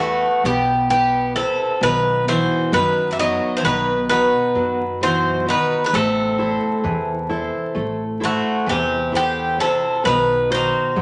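Soaked in a large studio's reverb and overlaid with vinyl crackle, this short excerpt of Greek folk has a dusky, muted top end, as if heard from an old record. A bouzouki band plays at 131 BPM, counted in eighths, in a straight 9/8 and tuned to A4 = 437 Hz, and the mood is melancholic and reflective. Up front, a bright, metallic lead bouzouki carries the melody between F#4 and E5, its paired strings partly doubled at the octave. A second bouzouki sits lower and softer with its own picked line. Beside it, a jumbo steel-string acoustic guitar adds a full-bodied, picked accompaniment with audible finger squeak, while a plucked upright bass supplies a woody, growly, thumpy low end. The harmony opens on E5, then moves through B at 1.8 seconds and Am at 5.9 seconds before returning to B at 10.0 seconds.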